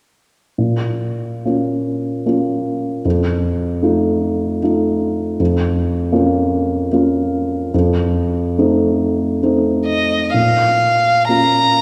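A dark, mellow grand piano opens at 0.6 s with a solemn accompaniment in a rubato triple metre, its audible action noise lending an intimate, vintage character to this melancholic romantic classical passage cut from a longer piece. At 9.9 s a single bowed violin enters up front with a rich, focused, vibrato-laden melody and a smooth top, just before the music moves into a new section at 10.3 s. A lush concert hall reverb surrounds the duo, giving the church-like space a long, resonant tail.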